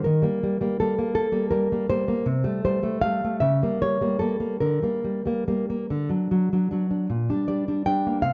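Dark, warm sound in a moderate recital-hall reverb frames this brief, wistful and passionate fragment of a romantic classical guitar piece in G minor, where a lone, up-front nylon-string guitar, thumb-plucked with audible finger squeak, moves with rubato through a slow 6/8 at around 47-56 BPM, passing from a rootless Eb through a C#dim7 to settle on Gm/Bb near 7.1 seconds.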